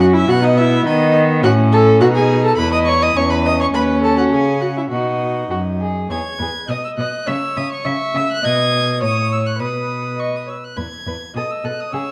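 A dark, warm production set in a stone room with a one-second reverb frames this cheerful, lively classical-period movement for string quartet at 103 BPM in 2/4, cut from a longer piece, where a nasal first violin with a smooth top carries the melody high over a distant, reedy second violin, a gut-strung viola's accompaniment and an up-front, rich cello bass with light vibrato, moving from B through F#m/A and C#m9/E before a second section from 6.1 seconds turns toward E, A6 and a closing B7.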